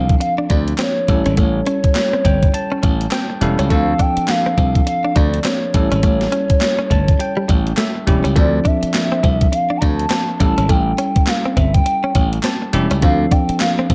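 A dark, lightly reverberant production carries this confident, slick new jack swing cut, taken from a longer R&B piece with a swung sixteenth-note feel. Up front, a gated 80s digital drum machine enters at 0.1 seconds with a thumpy kick, handclaps, hi-hat and a snare drenched in gated reverb, its sampler-style kit re-recorded in a large room. A glassy, punchy slap bass sits just as close, while a clean electric guitar, picked, recorded direct, compressed and touched with subtle chorus, plays a riff. A bell-like tine electric piano accompanies and adds fills, the first at 2.0 seconds, and a hollow, woody synth lead with a soft attack, vibrato and a chorus effect carries the melody in a mellow, clarinet-like tone. Underneath, the harmony moves back and forth between Dm7 and A7.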